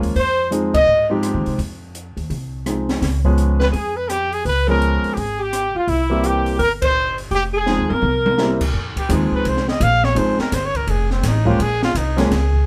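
Swinging eighths in 4/4 drive this cool small-group jazz piece, anchored by a woody, thumpy upright bass up front, a clear concert grand piano comping with deep low notes, and an acoustic kit with dark cymbals, a high-tuned snare and a boomy kick, the band playing together in a moderately reverberant studio room. A trumpet with light vibrato leads the tune while an alto saxophone, vibrato-tinged with subtone and scooped notes, shadows it from the background. After band accents and a drum fill, the saxophone drops out at 8.6 seconds and the trumpet takes a solo from 8.7 seconds to the end of the cut.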